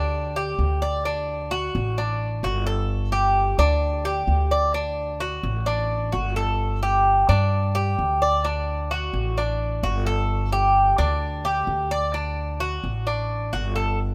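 The Cuban tres and upright bass begin together, the tres picking arpeggios on its doubled metallic strings, some of them octave-doubled, while the bass plays pizzicato beneath it. This short latin excerpt, cut from a longer piece, draws on Cuban son and guajira and has a danceable, warm mood in a straight 4/4. The harmony alternates steadily between G5 and D, changing roughly every couple of seconds across the single section. The upright bass has a woody, dark, thumpy gut-string sound, sitting up front in the low register. The acoustic tres sits just as close, its warm arpeggios spread above the bass in a middle range. A light reverb adds a little space around the two instruments, and both play through to the end at about 14 seconds.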